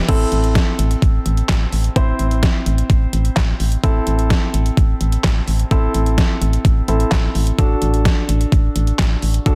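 A clear, intimate grand piano with audible action noise opens this nocturnal, driving synth-pop excerpt in A minor at 128 BPM, joined almost at once by a round, dark FM bass on a low A and a detuned, overdriven 8-bit drum machine with a thumpy kick, handclaps, hi-hat, crash and medium-tuned snare that sounds re-recorded in a small room, both up front in a dense, heavily limited mix with digital ambience as the harmony sits on A minor before shifting to D over A at 7.6 seconds.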